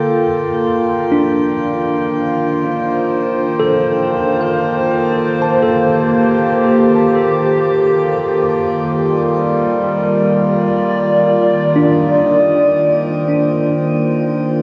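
A warbling, nostalgic tape-like pad opens this peaceful, serene ambient piece with dark, up-front sustained chords, sounding together with a reedy, breathing pedal harmonium drone and a glassy, ethereal glass harmonica tone that fades out over the first 12.3 seconds. A clean tine electric piano enters at 1.1 seconds with echoing arpeggios as the harmony drifts from F7 through Cm7 to Ebmaj9. The harmonium stops at 12.4 seconds as the music settles onto Cm11, all suspended in a vast, cathedral-like space, in this passage cut from a longer piece.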